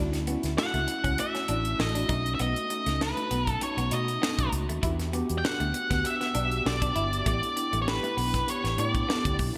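Polished 1980s jazz-funk pop in D major at 99 BPM with a light 16th-note swing and a breezy, upbeat mood, where a mellow tine electric piano with analog chorus and a clean, picked electric guitar riff with lush chorus sitting in the background ride over a dark, round, foam-muted fingered bass and a crisp, up-front fusion drum kit with a high-tuned snare and punchy kick, while an octave-fuzz lead guitar enters at 0.6 s to carry the melody through Dmaj9, B7, Em9 and A7sus4, all bathed in a moderate plate reverb and bright digital production in this excerpt cut from a longer piece.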